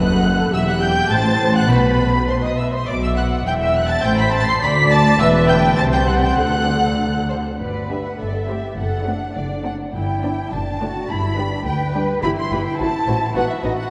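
Set in a brisk 2/4 with a rubato pulse, this quick classical-period movement for string orchestra feels urgent and dramatic, a passage taken from a longer piece. Muted first violins carry the melody high above a second violin section on a supporting line, both dark and veiled, with soft-attack vibrato and a lush, close presence. Beneath them, the viola section adds accompaniment from a more distant place, while the con sordino cellos, with only light vibrato, and the up-front double basses share the bass, the basses giving a warm floor. The harmony moves restlessly through minor chords and bare fifths before a second section arrives at 7.6 seconds, settling onto G and its dominant, then turning toward F#m7b5/A and a closing B7. A wet church reverb with a long tail surrounds the ensemble, softening the bowed strings into a shadowy, resonant haze.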